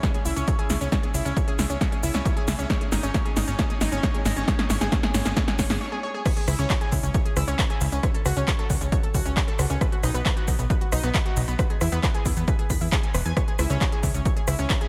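A drum fill on an overdriven big-room dance kit with a punchy snare, crisp hats, handclaps and crash opens this driving, bittersweet uplifting trance excerpt, over an up-front electronic kick, a funky sawtooth bass pumping with a filter pluck, and a round, warbling analog pluck arpeggiating through chorus, analog delay and sidechain pumping; after a short break at 5.8 seconds, the drop lands at 6.3 seconds as the chords move from C#m through F#m/C#, B and E, all bathed in a dreamy, reverb-soaked hall.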